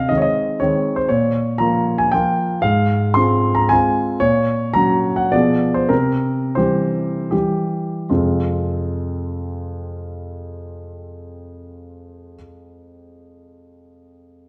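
An up-front, intimate grand piano with audible action noise plays a wistful, nostalgic romantic classical dance in triple time with dotted rhythms and free rubato, slowing between 3.4 and 8.1 seconds before a new section begins. The piano is heard alone in a reverberant recital hall, in a short passage cut from a longer piece.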